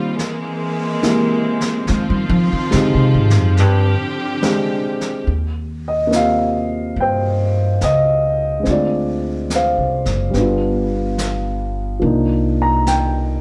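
A tender, late-night jazz ballad in Eb major opens with a dark, mellow upright piano and a rich, bowed string section holding smooth sustained chords with light vibrato, while brushed drums join almost at once. The tempo is a slow 71 BPM in 4/4 with a gentle swing on the eighth notes. The pizzicato upright bass, woody and thumpy with gut strings, enters at 1.9 seconds and carries a solo up front through the opening, as the harmony moves from C7b13 through Fm7. The strings fall away at 5.3 seconds, leaving piano, bass and the distant, roomy brush kit with its rolled-off top to carry the second section through Eb69, Dm7b5 and G7 before settling on Cm11. A wet studio reverb places the group further back in the room, and the passage is cut from a longer piece.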